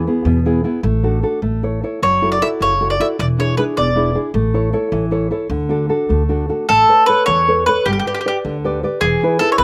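Sunny and lively, this fragment of an Italian folk serenade sways in a rubato 6/8: thumb-plucked classical nylon-string guitar and pizzicato steel-string upright bass play throughout, while an up-front, double-strung mandolin carries the woody melody from 2.0 to 4.2 seconds and again from 6.7 seconds, all heard dry in the open air.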